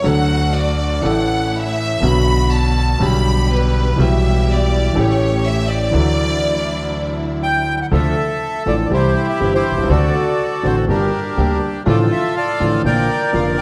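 Tense and sultry, this rubato tango excerpt moves at 122 BPM in 4/4, opening in D major with a distant, bowed chamber violin section carrying a featured second line over an up-front concert grand piano with deep bass, a woody pizzicato upright bass and rich string-section stabs in the background. At 7.4 s a reedy bandoneon takes the melody up front, and by 7.9 s the harmony darkens into D minor, passing through chords such as D7, Gm and Bb. A moderate scoring-stage reverb gives the ensemble a roomy sheen.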